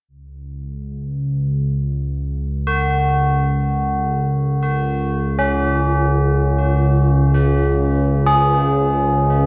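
Dark ambient drone excerpt with a cavernous, unsettling mood, where an up-front analog drone of detuned sawtooth and pulse-width-modulated tones, softened by subtle chorus, evolves slowly from 0.4 s before solemn, metallic tubular bells struck with a plastic hammer enter at 2.7 s with ringing arpeggios trailed by tape echo, all bathed in a wet spring reverb and an echo-heavy, dulled mix.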